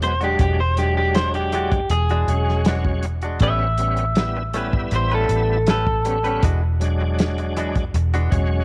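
A soulful, rollicking soul-blues groove in straight eighths opens with a slightly broken-up lead guitar, played through a small old amp, over a shouting tonewheel organ with slow rotary speaker, overdrive and chorus vibrato. Around them, a clean guitar recorded direct adds twangy, scooped stabs in lush chorus, a round, foam-muted fingered bass sits up front, and a muffled, lo-fi kit plays hi-hat, tight kick and snare. The chords move from E9 to A9 at 3.4 seconds and back to E9 at 6.4 seconds, where the lead guitar stops, while the organ and bass carry on to the close of this short cut from a longer piece in a small room with light reverb.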